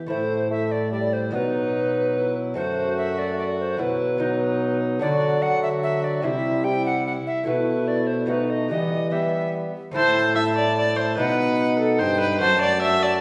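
A bright tenor recorder carries the melody up front, airy and woody with a crisp chiff and vibrato, while a reedy, gut-string viola plays a bowed second line close beside it. A smooth-topped bassoon and a clear trombone on the bass fill out the harmony, and a delicate fingerpicked lute with doubled gut strings sits in the background of this courtly, solemn renaissance-style consort dance in 3/4 at 146 BPM. The harmony moves from Am through B and F#dim to Em, with the opening section returning at 10.0 seconds, and the players are heard from further back in a wet recital hall in this passage cut from a longer piece.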